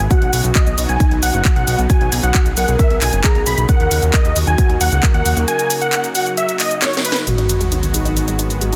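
A straight 4/4 pulse comes from a punchy, up-front electronic kick and a layered house kit with cracking snare, handclaps, hi-hat and shaker, driving this bittersweet uplifting trance fragment cut from a longer piece. Huge, bright supersaw chords carry the melody with low-pass filtering and dub echo. Beneath them sit a lush supersaw pad with a soft attack and long release, and a fat, detuned sawtooth bass up front, and these three parts pump with sidechain. A velvety, smooth synth lead with vibrato, chorus and dub echo sings a second line in the middle register. The kick stops at 5.1 seconds, a break follows with a drum fill and a band accent, and at 7.3 seconds a round analog pluck enters in the background with arpeggios under a filter sweep, alongside a sub drop impact. The harmony moves from Badd9 to D#m7 and lands on G#m7, all in a dense, heavily limited modern master with digital ambience.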